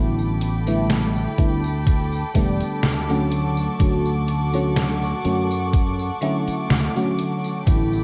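A lush, detuned FM electric piano with a soft pad layer, run through phaser, analog chorus and analog delay, carries this faded, dreamy vaporwave fragment at a slow 62 BPM in D major, moving from A9sus4 to Dmaj7 at 3.3 seconds over a growly, punchy fretless electric bass, a dark, intimate string section bowing sul tasto with light vibrato up high, a detuned 8-bit drum machine whose hi-hat, medium-tuned snare and tambourine are bathed in gated reverb, and a thumpy, sampler-style electronic kick that enters at 1.4 seconds, all softened by a light reverb and the hazy character of cassette tape.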